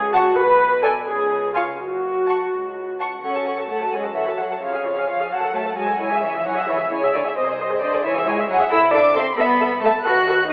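A quick, stormy classical-period string orchestra movement in a rubato 6/8, where a dark, soft-edged violin section carries the melody over a warm second violin line, an up-front, shadowy viola accompaniment and a bass of warm cellos with distant double basses, all bowed sul tasto with light vibrato and bathed in a wet scoring-stage reverb that has a curious telephone-like narrowness, cut from a longer piece.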